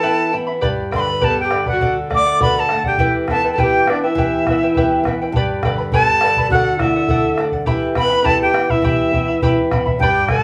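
A bright, reedy cane quena sits up front with an airy, vibrato-laden melody in this wistful, earthy Andean folk excerpt in E minor at 102 BPM, while a distant bamboo pan flute with a soft attack and chiff carries a second line beneath it. A shimmering, fingerpicked charango with double strings and a fingerpicked flamenco guitar, complete with finger squeak, provide accompaniment over a cycle of Em, G and D chords, and a round, vintage-sounding bombo joins at 0.6 s. The ensemble plays live in one room, with small room ambience and moderate studio reverb.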